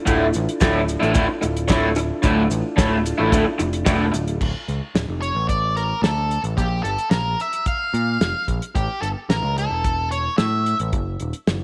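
A soft, flute-like tonewheel organ on slow rotary speaker opens this trippy, mysterious psychedelic rock excerpt, joined by a bright, double-tracked garage guitar riff with overdrive and phaser and grainy maracas in the background, all of which drop out by 4.4 s. An overdriven, round electric bass and a dry 70s drum kit with a fat snare and tight kick carry on, and from 5.2 s a fuzzy octave-fuzz lead guitar plays a distorted melody with slapback echo. The mix sits in a moderate echo chamber reverb with studio ambience.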